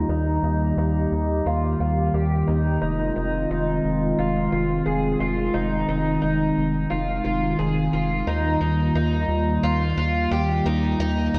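A picked twelve-string acoustic guitar sits up front in this dreamy, ethereal dream pop excerpt, its bright, shimmering arpeggios octave-doubled and carried by lush chorus, delay and a low-pass filter. Beneath it, a hollow, soft pad with a flute-like tone and slow attack holds sustained chords through chorus and its own low-pass filter. A round analog bass supplies deep, dark low notes with a fast attack, its tone evolving as it sustains. At 88 BPM in a straight 4/4, the harmony moves from Ebadd9 to Fm7 at 2.8 seconds and returns to Ebadd9 at 8.3 seconds, while a filter sweep runs the length of the passage. A wet hall reverb and bright 1980s-style digital production give the whole excerpt a floating, spacious glow.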